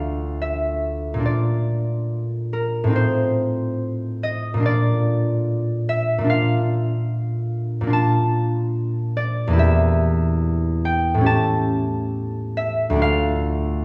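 Moving in a rubato 4/4 at about 71 BPM, this mysterious, gentle classical piece for solo concert harp, cut from a longer work, has the fingerpicked harp ringing up front from low D2 to A5 through a D minor progression that passes through Bb, F7/A, Edim and A7 before returning to Dm at 13.0 seconds, all set in a wet scoring-stage reverb along with small-room ambience.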